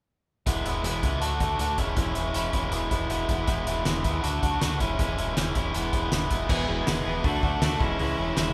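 A loose, straight 4/4 pulse at 159 BPM drives this jangly, carefree indie rock excerpt in E major, with an acoustic drum kit of fat snare, punchy kick and dark cymbals sitting up front in a pumping room alongside a bright, picked overdriven electric guitar riff. A growling fingered bass, amped and overdriven, anchors the low end as the chords cycle through E, D and C#m/E. At 6.5 seconds a second crunchy overdriven guitar joins with its own picked riff, all set in a moderate recital-hall reverb.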